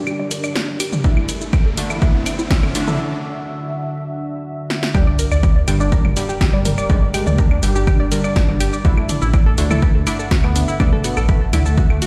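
Dark and hypnotic, this melodic techno excerpt moves at 123 BPM in a straight 4/4, built on Gm and Dadd9 harmony. It opens with a build-up: a deep, moody ambient pad holds sustained chords in the background while a warbly, dusty pluck plays lo-fi arpeggios through chorus and digital delay, and a thick, bold unison lead carries the melody with vibrato, tape colour and delay, both lead and pluck under a filter sweep. A punchy, overdriven analog drum machine supplies claves, hi-hat, shaker, snare and toms, an up-front overdriven electronic kick arrives at 1.0 seconds, and a brassy synth stab sits behind the mix with chorus and delay. After a riser and a break, a drum fill leads into the drop at 4.9 seconds, marked by an impact and sub drop, where a rumbling, beating detuned saw bass enters with sidechain pumping. A very quiet, string-like drone with ring modulation and a tense edge slips in later, while sidechain pumping breathes through the pad, pluck, lead, stabs and bass, and the whole mix rings with light stone-room reverb as if played on a big sound system in a bare room.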